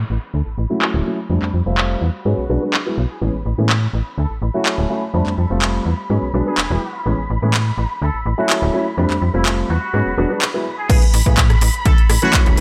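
A straight groove of pumping, overdriven house drums, with bright hats, handclaps, rim clicks and crash, drives this sunny, funky filtered disco house excerpt, as a filter sweep runs over the opening 10.9 seconds before a punchy analog kick arrives for the drop. A snappy, metallic FM slap bass and an intimate grand piano, carrying phaser, 12-bit sampler grit and audible action noise, cycle through Dmaj7, F6, E7 and Amaj7. A nasal, straight-muted trumpet section sings the melody from a roomy distance, while a dark, lush bowed string ensemble sustains chords in the background.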